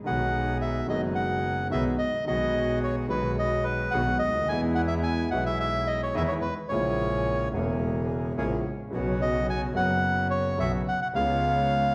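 A reedy, dark bandoneon carries an elegant, nostalgic tango melody up front in B major at 108 BPM with a rubato feel, joined by a brighter second bandoneon playing background stabs, a mellow concert grand piano with deep bass and audible action noise in accompaniment, and a biting bowed double bass with light vibrato, all set in a recital hall's lingering reverb in this short excerpt cut from a longer piece.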